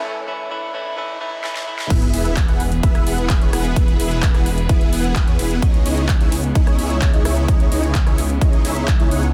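Festival progressive house at 129 BPM in E major, triumphant and anthemic, this excerpt opens on a filtered build-up where a twangy, picked clean electric guitar, distant biting strings and huge detuned supersaw chords pump under sidechain, with delay trailing the guitar and supersaws, while a background riser and swell climb toward a drum fill at 1.4 seconds. At 1.9 seconds the drop lands with an impact as a punchy, up-front electronic kick and a thick, chorused detuned saw bass arrive, the guitar stops, and the overdriven big-room kit drives on with a huge snare, metallic hats, handclaps, rim clicks and crash. The dense, heavily limited mix stays dry overall, moving from E to C#madd9 at 5.6 seconds under the lush supersaw riff.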